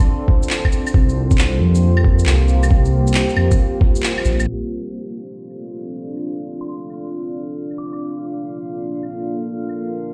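A swung 16th-note groove at 136 BPM in 4/4 drives this wistful, ghostly future garage excerpt in D minor: a muffled, thumpy kick sits up front beside a rumbling, detuned saw bass, while electronic shaker, handclaps and claves tick through a low-pass filter over a deep, moody pad whose sustained Dm7 to C7sus4 chords pump against the sidechain. The kick ends at 3.9 seconds and the bass at 4.5, opening a sparser passage where a filter sweep works on the percussion and the harmony returns to Dm7 before resolving to Bbmaj7. A calm, glassy texture of drifting overtones enters at 5.4 seconds, and a soft FM bell adds a faint, pure phrase through tape echo, all set in a stone-room reverb.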